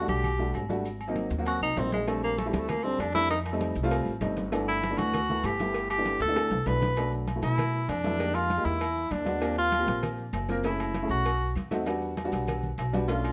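A breathy tenor saxophone solo with vibrato and scooped notes leads this sophisticated, danceable Afro-Cuban jazz passage at 196 BPM from the start, up front over a slightly detuned, woody upright piano and a thumpy, gut-strung pizzicato upright bass, while ringing agogo bells and timbales, bright damped congas and grainy maracas sit in the background from 0.1 seconds, a drum fill arrives at 1.3 seconds, tight high-tuned cowbell and bongos join at 2.1 seconds, and sophisticated rootless and extended chords move under a moderate studio reverb in this section cut from a longer piece.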